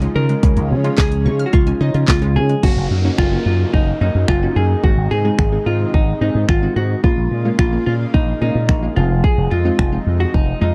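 A punchy house drum kit with a cracking snare, finger snaps and handclaps drives this energetic dance-pop track at 109 BPM, with a bright slap bass through an envelope filter up front and a dark, clean hollow-body jazz guitar carrying the melody with slapback echo, while crisp wavetable chord stabs and a lush detuned pad pump in the background, a round analog pluck plays arpeggios until 2.6 seconds, and a downlifter sounds from 2.6 to 7.0 seconds over chords moving from Dbadd9 to Fm7, all in a dry, close 1970s-style studio sound.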